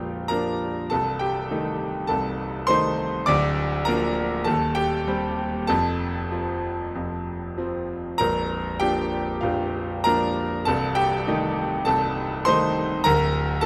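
A classical virtuoso piano study, this brief passage cut from a longer piece carries a brilliant, heroic mood in a flexible, rubato 4/4. A bright concert grand piano plays alone for the full 13.7 seconds, reaching from deep bass notes around Bb0 up to D6. The instrument sounds present and up front, its sparkling upper register set against a rich low end. Close, detailed microphones capture the playing, with light reverb adding a touch of space around it. The harmony moves through major and diminished colours before settling back toward its home chord.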